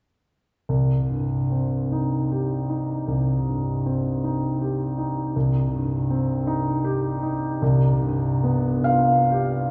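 A romantic classical nocturne for solo piano, this short fragment of a longer piece carries a yearning, mournful mood, unfolding in 12/8 with free, rubato timing. The concert grand plays alone from 0.7 to 9.7 seconds, its tone clear and open with a deep bass, spanning low to middle-upper registers as the harmony settles on a minor chord before moving to a dominant seventh near 7.6 seconds. A long, wet cathedral reverb surrounds the instrument, placing the listener further back in a vast stone space where the upper treble is gently softened.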